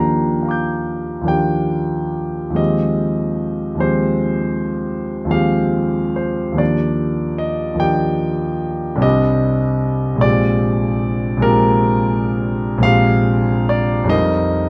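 Impressionist classical solo piano in a hazy, dreamy mood, moving with a free rubato in 9/8. A single concert grand plays alone for the full 14.7 seconds, its clear, natural tone sitting up front with a deep bass and long sustain as rich extended chords drift from Ebmaj9 through Fm9/Eb, Cmadd9 and Bb13 before pausing on an unresolved F9sus4. Close, detailed microphones catch the instrument within a moderate recital-hall reverb, and the passage is cut from a longer piece.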